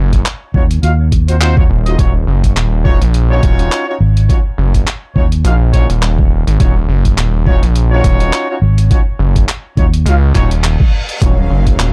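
A swung, head-nodding 4/4 groove drives this gritty, funky glitch hop fragment, built on a thumpy, pitched-down electronic kick and a compressed, tape-soaked sampler-style kit of handclaps and hi-hat. Underneath sits a doubled low end: an aggressive, saturated synth bass with tube saturation and sync-edged sawtooth bite, joined at 0.5 seconds by a growly, amped fingered electric bass, both pushed up front. Tight, punchy horn stabs with octave doubling and vibrato sit back in the mix, sidechain pumping and trailing dub echo. Near the close a reverse cymbal rises in from 10.3 seconds, and at 11.2 seconds a lush, bowed symphonic string section arrives with focused, pumping sustained chords over a single Ebm9 harmony. The production is dark and dry, with little reverb, and the piece is cut from a longer track.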